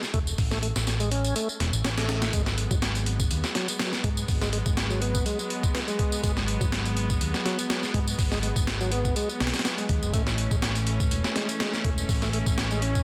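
A swung 4/4 breakbeat groove of gritty, compressed sampler-style drums with a thumpy kick and medium-tuned snare sits up front beside a tape-warm tambourine, while a dark, round picked electric bass and a reedy, bright tonewheel organ riff through chorus vibrato, slow rotary speaker and digital delay drive this funky excerpt, joined at 2.3 seconds by earthy bowed chamber strings holding sustained chords that pump under sidechain, all under light digital ambience and a dense, heavily limited modern master.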